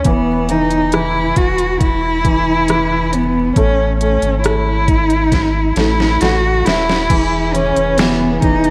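A hopeful, tender pop ballad in which a single bowed cello carries the melody up front, rich and expressive with vibrato and portamento, over a woody upright piano; both cello and piano carry a slapback echo. A smooth, tape-toned R&B drum kit with a knocking kick and deep snare plays alongside a round sine sub bass, the drums and piano each add a fill, and at 7.1 seconds a mellow, dark tonewheel organ with slow rotary speaker enters in the background. A lush hall reverb lends a big arena sound, dusted with vinyl crackle.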